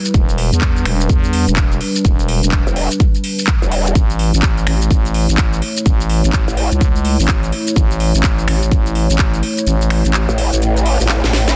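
A dark, detuned analog pad and a house drum kit with a cracking snare and metallic hats open this bouncy, aggressive bass house excerpt at 126 BPM, swung on the sixteenths, with a thick, growling FM bass and a punchy electronic kick joining at once under chords moving from Em to A. A second, wobbling growl bass, distorted and shaped by a formant filter, pushes up front from 2.7 to 6.7 seconds and returns at the close, while both basses and the pad pump against the sidechain. The kick drops out at 9.7 seconds before a short drum fill, and the mix is dry, dense and heavily limited.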